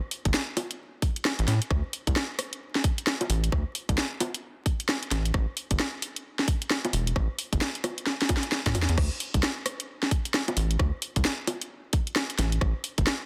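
A rubbery, hollow square-wave bass underpins this skippy UK garage excerpt, its resonant filter pluck sitting up front with tube saturation and sidechain pumping as it moves between E1 and A2. At 132 BPM in 4/4 with a swung two-step feel, an overdriven garage kit of bongos, crash, hi-hat, rim click and a cracking snare bounces alongside a tight, layered electronic kick, both carrying small room ambience, with a drum fill from 8.1 to 9.0 seconds. The dense, heavily limited master adds light reverb and a layer of vinyl crackle.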